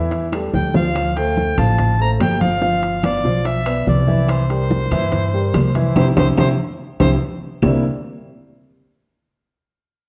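Afro-Cuban jazz fragment, danceable and sophisticated, where a clear harmonica with light vibrato and scooped notes carries the jazz melody over an up-front grand piano with deep bass and long sustain, a growly pizzicato upright bass, ringing low-tuned congas, soft-handed bongos, metal-shell timbales and woody claves in the background, with a drum fill at 0.3 seconds and a band accent from 6.0 seconds, heard through a large studio reverb and the warbling pitch drift of worn cassette tape.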